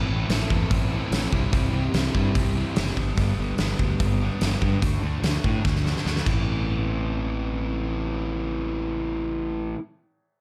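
A big, up-front acoustic rock kit with a fat snare and punchy kick drives this brooding, gritty classic rock cut in a bright stone room, entering at 0.3 seconds and closing its run with a fill at 5.6 seconds. Beneath it, a growly fuzz bass rumbles through an Am, C, G, D progression, while a compressed, distorted guitar picks a bright riff out front and a dark, overdriven sludgy guitar sits in the background until 3.0 seconds. The dry mix carries little reverb, and the guitar and bass play on after the drums drop out in the closing section.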